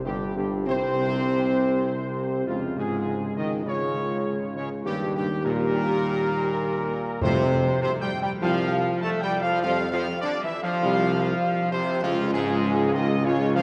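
In a straight, unhurried 4/4, this regal brass chorale moves through broad, majestic harmonies, shifting from Fsus2 to Db and Eb before returning to Fsus2 and settling again on Db. A mellow trumpet section carries the melody up front with light vibrato and a smooth top. Bright, tight trombones and soft-attack French horns, the horns set in the background, hold sustained chords beneath it. A clear, vintage-toned tuba anchors the bass, and timpani played with soft mallets on calf heads add a round tone between 7.2 and 8.1 seconds. The whole ensemble blooms in a long, wet cathedral reverb with a dark production, giving this excerpt from a longer piece a grand, ceremonial weight.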